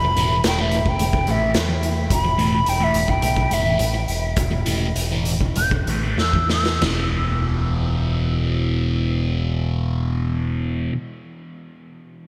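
Mysterious and hypnotic, this psychedelic rock excerpt in 4/4 moves at 92-108 BPM, slowing down from 2.1 s as a hollow, pure concert flute with vibrato plays a solo through tape echo until 6.8 s. Up front, a double-tracked fuzz guitar riff with phaser sits over a dark, round dub bass, while a gritty, punchy garage drum kit in a bright stone room plays a fill before stopping at 7.0 s. The dreamy mix is soaked in a huge ambient reverb.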